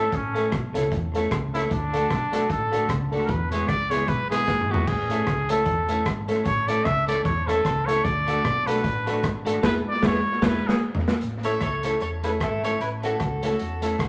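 A breathy, close-miked trumpet carries this cheerful, joyful ska piece at 151 BPM in A major, singing an intimate, vibrato-tinged solo over a swung groove until about 11 seconds, when a round, double-strung mandolin takes over the melody. Beneath it, a gritty, saturated breakbeat kit with tape echo sits up front, with fills at 4.5 seconds and again leading into the change, while a woody upright piano adds mellow stabs and a hollow-body bass supplies a dark, amped low end. Two clean, picked electric guitars fill out the background, one picking out accompaniment and the other playing a twangy, scooped low riff, all within a large, wet studio reverb as the band punches out accents before the final chord.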